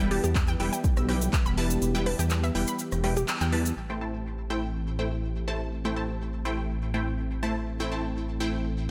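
Emotional and driving, this progressive house excerpt moves at 123 BPM in a straight 4/4, centred on A minor and shifting from an E minor chord to A minor seventh at 3.8 seconds. A dark, detuned saw bass rumbles up front with a deep, beating tone, while a smooth, soft-edged analog pad holds sustained chords in the background, both breathing with sidechain pumping. A lush, punchy unison pluck fires bright stabs through a phaser and digital delay, and a round analog pluck spins chorused, tape-coloured arpeggios with delay until it stops at 3.5 seconds. A deep electronic kick sits up front in a small room before dropping out at 1.8 seconds, and a deep house kit of handclaps, hi-hat and rim click carries on with filtered, silky hats beside a grainy, close cabasa that stops at 3.7 seconds. The full band hits an accent at 3.3 seconds, and light digital reverb gives the mix a polished sheen.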